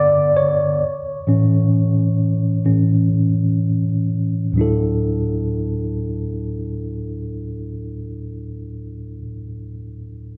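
This heartfelt pop fragment sits at a slow 61-67 BPM in 4/4 with a straight feel, in D major. A mellow tine electric piano carries the accompaniment from 0.0 to 10.4 seconds, spanning D2 to D5, and plays solo through the first 4.6 seconds. Its clean tone sounds as if heard through the instrument's built-in speakers and sits up front in the mix. The opening passage slows down through its first 4.6 seconds over G and A chords, then settles onto a Dadd9 at 4.6 seconds as a second passage begins. A wet echo chamber reverb and studio ambience give the emotional playing a roomy glow, with a faint mains hum beneath.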